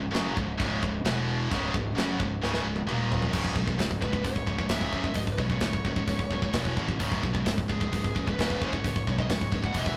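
A rough rehearsal-room recording with tube saturation and a moderate stone-room reverb frames this heavy, aggressive metal fragment, where two picked, high-gain distorted guitars play a riff over a growly, punchy fuzz bass and a tight, up-front drum kit with bright cymbals that plays a fill at 2.4 seconds, before a dark, bluesy overdriven lead guitar enters at 4.0 seconds.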